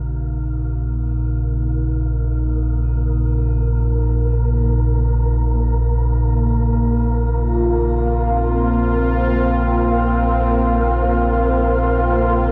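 A deep, rumbling drone anchors this ominous, cavernous ambient fragment in free time and Bb minor, its filter sweeping across the full 12.5 seconds beneath a breathy, wind-like tuned noise texture that fades in, while a bronze singing bowl rings metallic arpeggios in the background with delay and shimmer reverb until 6.3 seconds. At 6.0 seconds a bright, sweeping resonant pad enters up front with sustained chords, its detuned sawtooth tone treated with chorus and shimmer. Everything sits in a huge, cavernous reverb with the worn, warbling pitch drift of old cassette tape.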